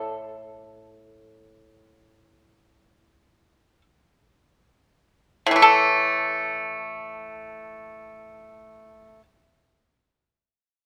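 Closely and intimately recorded with a touch of light reverb, this longing, contemplative Chinese traditional piece, cut from a longer work, features a solo acoustic pipa played with fingerpicks in free time, its dry, percussive tone sitting up front across a range from A2 to A4 as it slows over the opening 5.6 seconds before moving into a new section and falling silent at 9.2 seconds.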